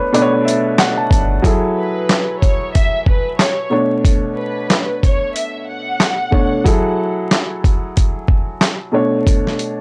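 Moody and gritty, this short boom-bap hip-hop cut moves at 92 BPM in F# minor with a swung sixteenth-note feel, drifting between Bm9 and F#m9 chords. A baby grand piano carries the accompaniment from the start, natural and up front, its tone softened by cassette-tape coloring and filtering. A dusty, sampler-style drum kit sits just as far forward, compressed and rough-edged, with a thumpy kick, medium-tuned snare, hi-hat, shaker and handclaps. Very quiet, close finger snaps flicker briefly near 0.8 seconds, and a deep, round sine sub bass with tube saturation surfaces only for a moment around 1.1 seconds, sitting in the background. From 1.8 to 6.6 seconds a lush, bowed violin section takes the melody, smooth and even with vibrato, filtered and touched with tape echo. The whole mix is dry and raw, with transformer saturation and vinyl crackle giving it a worn, hardware-recorded grit.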